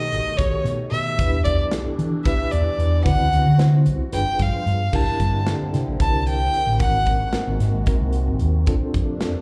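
Funky, soaring electric jazz fusion in 7/8, cut from a longer live club set heard through the venue's PA, where a rich, smooth bowed violin with vibrato carries the up-front solo melody until 7.3 seconds over a reedy, mellow electric piano with tremolo, a swirling, detuned sawtooth pad with phaser and chorus, a dark, round hollow-body fingered bass, and an acoustic kit with a tight kick and medium-tuned snare, all moving through jazzy chords from B7b13 to Bbmaj9.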